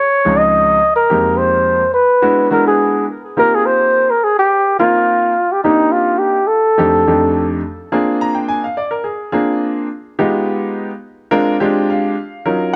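Soaring and slick, this straight-feel jazz excerpt moves at 106 BPM in 4/4 and sits in Bb mixolydian, drifting through rich chords such as Dbmaj9, Fm11 and F13. A bucket-muted trumpet carries the melody up front with a dark, veiled, vintage tone, shaded by vibrato and scooped notes. A clear, present grand piano accompanies from 0.2 seconds and carries on alone after the trumpet stops at 7.6 seconds, all under light reverb.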